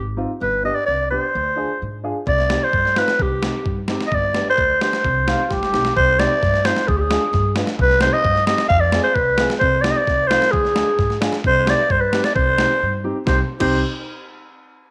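A raspy, growling clarinet opens this bittersweet, soulful klezmer passage in 2/4 with a straight feel. It carries the melody up front with a light vibrato and a jazz-tinged edge, while a woody, pizzicato upright bass holds the low line beneath it. A dark, long-sustaining upright piano joins almost at once as accompaniment, sitting further back. At 2.3 seconds a boom bap sampler-style drum kit arrives, pitched down and compressed, with a thumpy kick, a medium-tuned snare and a crash cymbal, its gritty, tape-tinted sound carrying the air of a large room. A reedy, vintage accordion surfaces only briefly, from 5.3 to 5.9 seconds, as a second line around a drum fill. The harmony circles among C minor, G, D diminished and F minor chords before a short break near the end of this cut from a longer piece, which is bathed in moderate plate reverb and a small room.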